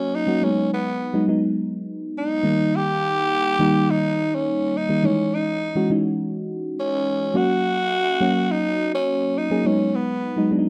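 Pop in G# minor at 104 BPM, this nostalgic, dramatic excerpt pairs a raspy, growling tenor saxophone melody, carrying a slapback echo and light vibrato, with a round, warbling FM electric piano whose chorus-tinged chords move from G#m7 through D#, C#madd9/E and F# before returning to G#m7. Both parts sit up front in a dry, close 1970s-style studio sound with moderate booth ambience; the saxophone drops out at 10.5 seconds while the dark, softly decaying piano rings on to 10.7 seconds.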